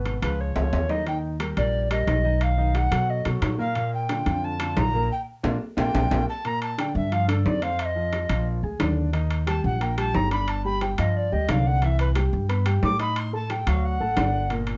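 A straight 4/4 pulse at 178 BPM drives this lively, sophisticated Afro-Cuban jazz fragment, cut from a longer piece, moving from Bb major into G minor at 6.4 s. A mellow alto recorder carries the melody as a solo throughout, its airy wooden tone full of vibrato, tongued chiff and expressive phrasing, sitting up front yet distant in a plate reverb. Beneath it, a woody, thumpy upright bass with gut strings plays pizzicato, while a dark concert grand piano supplies natural, deep-bassed accompaniment. Ringing metal-shell timbales with a vintage, band-limited character add drum fills near the start and again from 5.4 s, overlapping a band accent that begins at 5.1 s, just before the minor-key turn. The harmony is colourful, moving through chords such as Dbadd9, Ebmaj7, B7 and Gm7 and closing on D7b9 resolving to D, all within a dark production with light reverb.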